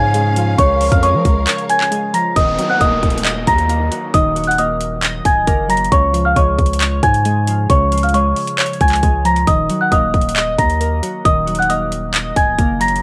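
A delicate, bell-like celesta melody opens this melancholic half-time trap cut, over glassy digital keys colored by chorus and phaser, lush bowed strings that stop at 2.3 seconds, and a deep, sine-toned 808 bass with long, decaying notes. Hard-hitting electronic drums arrive almost at once, with a hard-clipped kick, metallic hi-hats and handclaps sitting up front alongside the mellow celesta and its analog delay. After a short break, an electronic downlifter sweeps through from 2.4 seconds, while tape saturation on the celesta, keys, strings and drums lends a dry, homespun cassette grit.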